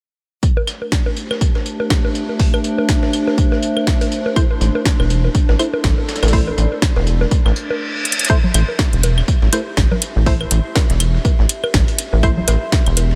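A rubbery, hollow square-wave bass sits up front from 4.6 seconds, its bouncy filter pluck pumping against a punchy, tape-warm electronic kick in this sparse, hypnotic minimal techno cut at 122 BPM in A minor, with a 58% swing on the sixteenths. Around them, a house kit adds cracking snare and metallic hats, while a gritty, sampler-style soul kit with tambourine, re-recorded in a small room, sits quietly underneath with overdrive and pumping, filtered hats and percussion. Overdriven analog bongos, claves and congas ripple through an analog delay, and a warbling, nostalgic lo-fi pad in chorus and reverb hovers darkly alongside a tense, swarming granular drone on D4 that sits in the background and drops out partway through. A muted, deep sawtooth dub chord stab with chorus and delay drifts in over the A minor harmony, before a reverse cymbal and a drum fill lead into a shift to an A5 chord at 8.3 seconds. 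The mix carries a light digital ambience, and the passage is cut from a longer piece.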